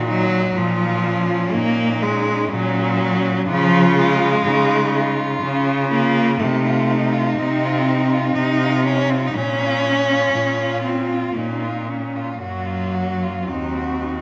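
In a rubato 3/4 at 61 BPM, this solemn, yearning classical passage for cello ensemble in Bb minor is cut from a longer piece. A dark-toned cello carries the melody and a warm, soft-attacked cello sings a second line, both close-sounding yet set in the background, while two rich cellos sit up front, one playing the accompaniment and the other a focused, smooth-topped bass. All four are bowed by single players with vibrato, the upper three adding expressive portamento, and a concert hall reverb with a 2.0-second decay surrounds the ensemble as the harmony moves from Bb minor through Db and F7 toward Gbmaj7 and Eb minor.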